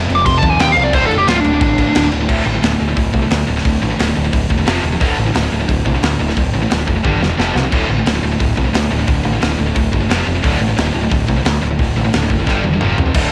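Heavy metal at 177 BPM in D minor, this aggressive, heavy clip from a longer piece churns over power chords on F, D and G. A dark, high-gain lead guitar sits up front for a short solo from 0.2 to 2.1 seconds, its distortion colored by cassette tape and trailed by analog delay. Behind it, two bright, picked high-gain guitars drive the riff in the background, joined by a very quiet, double-tracked fuzz guitar that adds a murky layer. A growling, overdriven electric bass sits up front with a warm, direct-and-amped tone. The polished studio drum kit, with its punchy kick, medium-tuned snare and airy room sound, plays up front and breaks into fills at 7.0 and 12.5 seconds, the whole thing carrying the small-room, home-cassette character of its recording.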